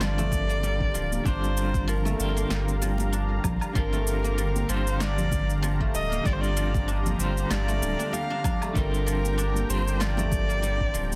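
An earthy, mystical stretch of organic downtempo opens on a Gm7 chord, with a bowed kamancheh singing an expressive melody between Bb4 and F5, its soft attack, vibrato and portamento trailed by delay. Beneath it, a clean, picked electric guitar adds accompaniment through tremolo, digital delay and sidechain pumping, while a guzheng played with fingerpicks rings out silvery arpeggios echoed by digital delay. A smooth, warbling vintage pad built from detuned sawtooth tones holds sustained chords in the background, chorused and pumping. A round sine sub bass sits up front with tube saturation, and an overdriven, punchy electronic snare with shaker and woodblock carries the groove at 96 BPM in 4/4 with a light 16th-note swing. Soft-handed congas join at 0.2 seconds and a deep, overdriven electronic kick at 0.3 seconds, both tucked into a dry, dense and heavily limited mix.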